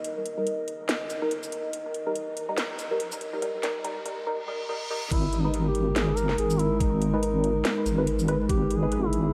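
Meditative and dark, this deep dubstep excerpt at 142 BPM in a swung half-time 4/4 opens with a build-up in D#: a moody, detuned analog pad with chorus and a muted, phaser-treated dub chord stab with echo, joining at 0.4 seconds, both move under filter sweeps, while a tape-warm garage kit of cracking snare, metallic hats, shaker and crash sits in studio reverb and an electronic riser from 0.6 seconds leads into a reverse cymbal. At the drop at 5.1 seconds, the harmony moves to G#, and a knocking electronic kick, an up-front, compressed wobble bass and a dark duduk arrive together. The duduk plays a solo, folk-style melody with vibrato, scooped notes and dub echo over light digital ambience and vinyl crackle.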